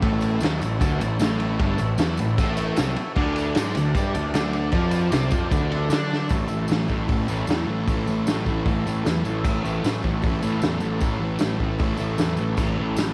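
A rowdy garage rock fragment in A major at 153 BPM kicks off with a warm, double-tracked fuzz guitar riff, a growly fuzz picked bass and a punchy, saturated garage drum kit all up front, while a buzzy overdriven combo organ holds sustained chords with light vibrato in the background. A jingly, close tambourine joins at 0.2 seconds, and the chords move from A to D5 before a drum fill at 6.1 seconds brings the music back to A for the second section. The whole thing sits in a small, lightly reverberant room with a raw energy.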